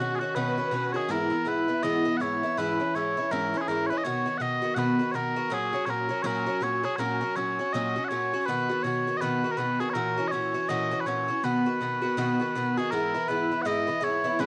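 Lively and cheerful, this Celtic folk excerpt moves at 162 BPM in 4/4 with a swung eighth-note feel, set in B major. Mellow small bagpipes carry the melody up front from start to finish, their sweet, continuous tone colored by vibrato as they play solo over the accompaniment. An Irish bouzouki, equally forward in the mix, supplies picked accompaniment throughout, its paired strings giving a warm metallic ring to the acoustic body. A musette accordion appears only briefly as a second line in the background, sounding reedy and shimmering from its wet tuning before dropping out at 0.9 seconds. The harmony moves from E through C#m and B to F#, with an F#7 pulling back to B before E returns at 12.9 seconds. The close, dry 1970s-style studio sound is touched by moderate studio reverb, and the clip is cut from a longer piece.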